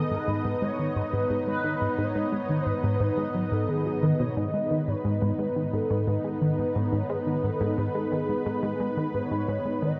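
From the first moment, a tight, driving sequenced synth riff, a lush unison pad and an expressive portamento lead all sound together in this hypnotic, expansive piece of ambient, sequencer-driven space music, cut from a longer work. The low riff has a detuned sawtooth pluck treated with chorus and delay, and a filter sweep runs across its arpeggiated sound throughout. Up front beside it, the pad holds thick, warbling vintage chords that bloom slowly and linger, thickened by chorus. The lead carries the melody in a smooth, dark, wave-folded voice with vibrato and gliding portamento, wrapped in ensemble chorus and delay. Everything sits in a wet cathedral reverb with a 6.2-second tail that opens the music into a vast, echoing space, and the riff falls away at 9.9 seconds just before the pad and lead end at 10.0.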